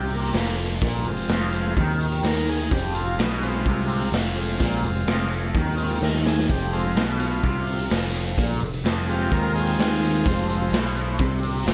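A buzzy vintage combo organ, a distorted fuzz guitar riff and a round, dark picked electric bass open this hypnotic, trippy fragment of psychedelic rock, with a raw garage drum kit joining at 0.1 seconds. The organ holds clean sustained chords bathed in spring reverb and carries a transistor-organ solo through the whole passage, while the double-tracked, bright fuzz guitar sits up front with a phaser coloring its fuzzy riff. Beneath it the bass plays direct and low, anchoring a straight 4/4 groove at 127 BPM in F minor over a single Fm chord. The drums are saturated and boomy, with a medium-tuned snare, rolled-off top and a pumping stone-room character, and they break into a short fill at 6.0 seconds. The whole fragment rests in a small room with light reverb.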